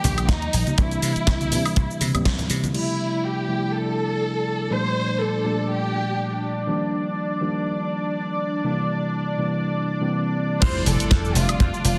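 A worn, slightly out-of-tune tine electric piano with a filter sweep runs through this groovy, feel-good nu-disco excerpt at 122 BPM in F major, under an expressive, vibrato-rich studio violin section, while a punchy thumbed slap bass, an electronic house drum kit with bright hats, low-tuned congas in the background and a tight, up-front kick drive the opening before a lush, detuned sawtooth pad with sidechain pumping enters at 2.7 seconds, and the drop at 10.6 seconds brings the bass, drums and violins back alongside a very quiet impact, inside a moderate echo-chamber reverb.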